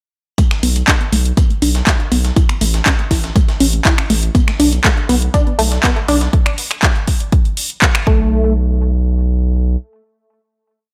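Driving and emotional, this short progressive house piece at 121 BPM builds from 0.4 s with a punchy, overdriven four-on-the-floor kick, a tight detuned sawtooth arpeggio running a 6-step loop that drifts against the bar through chorus, tape echo and a filter sweep, bright programmed hats with snaps and claps, and a gritty, pitched-up breakbeat sitting in the background, joined at 0.6 s by a thick saturated sub bass pumping off the beat, moving through A5 and Bm to an Asus2/B before the final hit at 8.3 s.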